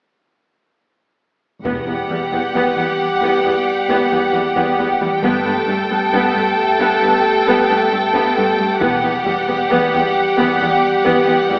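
A dramatic, epic orchestral film-score cut in E minor at 67 BPM opens at 1.6 s with lush violas, clear and intense cellos, and a double bass section in the background. A high violin melody full of vibrato and portamento follows, along with a smooth second violin line set up front, mellow, roomy French horns holding chords, and heavy-stick taiko hits from 1.7 s, while the harmony builds from Emadd9 to Gadd9 and back. The sound is steeped in wet scoring-stage reverb and heard from further back in the room with an AM radio colouring, cut from a longer piece.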